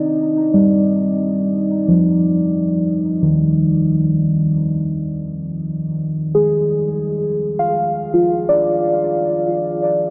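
Ambient in free time, this serene, weightless excerpt holds a single Abmaj7 colour for its full 10.1 seconds. Muted felt-like synth keys play solo between Eb3 and F5, their dark, intimate tone carrying a fast attack that decays softly, set up front with chorus and a diffuse ambient delay. A huge, wet reverb with a 7.3-second tail surrounds the keys in a vast, floating space.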